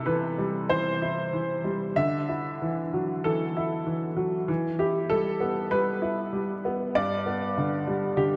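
Melancholic and wistful, this brief excerpt of neoclassical minimalist piano in E minor unfolds at a rubato 96 BPM in 4/4, with a clear, woody, slightly detuned upright piano playing solo from G2 to E5, up front and touched with delay, moving through C, Dadd9, Em and G inside a lush hall reverb that leaves the dreamy mix soaked.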